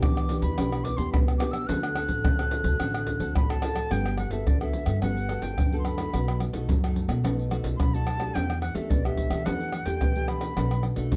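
Lively and sunny, this excerpt of samba and choro puts a breathy, bright metal jazz flute on the melody, its reedy tone carrying vibrato and a crisp, chiffy attack, over a fingerpicked nylon-string guitar in a classical style with old strings. Underneath, a woody, thumpy pizzicato upright bass with gut strings holds the bass line, while an up-front, compressed and saturated percussion group of egg shaker, deep surdo, pandeiro and tamborim drives the groove. The dark production sits in moderate studio reverb, and the flute drops out at 10.8 seconds as the rest of the band plays on to 11.2 seconds.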